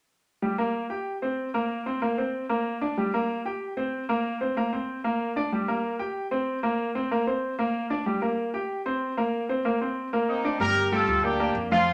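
This fiery, driving Latin excerpt in G minor runs at a brisk 189 BPM in a straight 4/4, cut from a longer piece. A polished baby grand piano opens alone at 0.4 seconds, sitting present and up front as it cycles through a repeating progression of G minor, C5, Bbsus2 and Bbadd9 in its middle register. Near the end the harmony shifts to Cm7 and then Gm7 as the music moves into a new section. A punchy horn section takes up the melody at 10.3 seconds, clear with a light vibrato and a pop-style ensemble sound. An acoustic upright bass arrives at 10.6 seconds, plucked pizzicato with a woody, growly thump, set lower in the mix beneath the piano and horns. A wet studio reverb gives the recording a moderate sense of space.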